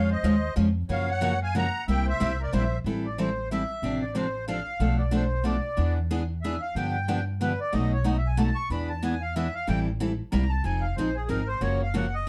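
A dark, lightly reverberant production frames this brief, bittersweet jazz manouche excerpt in A minor, swinging at 184 BPM in 3/4, where a shimmering musette accordion carries the melody until 2.8 seconds, a reedy second accordion with slow beating takes a solo from 2.9 seconds, a bright, freshly strung picked steel-string acoustic guitar comps up front, and a woody pizzicato upright bass anchors the harmony through chords like Am7, E7 and Gbmaj7.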